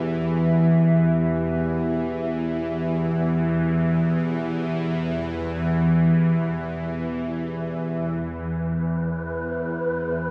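A vast, echoing cathedral reverb with a six-second tail hangs over this brief fragment of dark ambient drone, cut from a longer piece. Set in E minor and tuned to A4 = 442 Hz, it moves in free time with a cavernous, ominous mood. Up front, a tense, string-like bowed drone holds low between E2 and E3 for the full length, its detuned sawtooth unison edged with a noise layer, slow attack, vibrato, phaser and long release. Above it, a deep, moody analog pad sustains an E minor chord from B3 to E5 with square, triangle and sine tones, a sub octave, wave-folding and subtle chorus, before stopping at 8.2 s as the harmony thins to a bare E5. At 8.6 s a breathy, wind-like tuned noise texture drifts in on B4, airy and shadowed, carried to the close by its own reverb.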